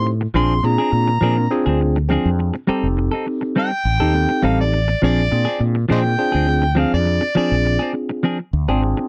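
An overdriven harmonica leads this gritty, swaggering blues cut, its amplified tone punchy and up front, playing a jazz-style solo with scooped notes, tongue slaps and a light vibrato until it drops out at 7.9 seconds. The tempo sits at 103 BPM in a straight 4/4, moving from Bb9 to a rootless F9 and back to Bb9. A bright tine electric piano fills in the accompaniment with a clean, direct sound colored by phaser, while a clean electric guitar adds picked, compressed stabs with a warm edge. Underneath, a mellow fretless electric bass carries the low end with a round, dark tone, sitting a touch louder than the other parts. The sound is dry and close, like a 1970s studio session, and the passage is cut from a longer piece.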